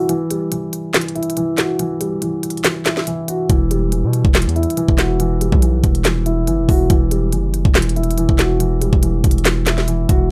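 A half-time trap groove drives this dark, melancholic hip hop excerpt, its drum kit pushing a knocking kick, sharp snare, crisp hi-hats and handclaps up front. A mellow, boxy grand piano carries the accompaniment, opening on an Emadd9 chord under a low-pass filter sweep throughout, and during the opening break it is joined only by the drums. At 3.5 seconds a distorted 808-style bass arrives, heavy and saturated with a noise layer and fast attack, filling the low end under light reverb.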